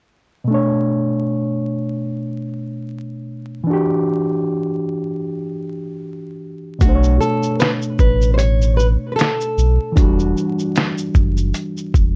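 A gritty, reedy overdriven electric piano with cassette-tape character opens this nostalgic, reflective lo-fi hip hop excerpt in B minor at 76 BPM with a 16th-note swing, alternating Bm9 and Em9 over vinyl crackle and light reverb, until at 6.8 seconds a fingerpicked nylon-string guitar melody with analog delay enters alongside a deep, sustained sine sub bass with octave and a muffled, pitched-down sampler-style drum kit with thumpy kick, fat snare, hi-hat and shaker.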